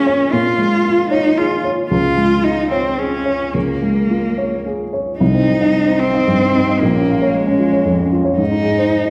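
A dark, woody upright piano sits up front, carrying the accompaniment across its full span in this short, hopeful and tender neoclassical fragment in 3/4 at 112 BPM, played with a rubato feel. A single bowed cello, close and focused with a rich vibrato, shapes a second line beside it from the start, as the harmony moves from Bbm7 through Db6 and Cm, back to Bbm7, before settling on Ab near 8.4 seconds. Both voices bloom in the lush reverb of a recital hall or church.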